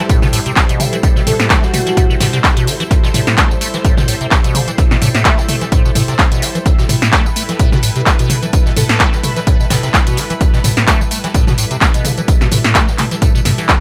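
Playful and raw, this acid house excerpt at 128 BPM with a swung 16th feel rides a single Am7 chord, as a squelchy, resonant liquid acid bass riff with phaser and overdrive sits over a punchy, dry electronic kick and an up-front electro analog drum machine of handclaps, metallic hats, snare, tambourine and toms, while a very quiet, gritty breakbeat sampler kit adds hi-hat and snare, a lush vintage string machine holds sustained chords with ensemble chorus and sidechain pumping, and an airy, dreamy lead with dub echo drifts in the background briefly at 1.3 seconds and again at 8.8 seconds, all in a light reverb.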